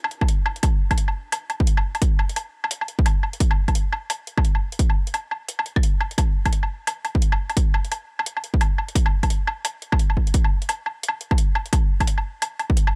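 A half-time, swung groove drives this tense, heavy drum and bass excerpt, where an up-front electronic kick drum with a heavy, tape-warmed thump sits alongside layered electronic woodblock and metallic hi-hats that carry a small-room tinge, all captured in a dry, gritty recording.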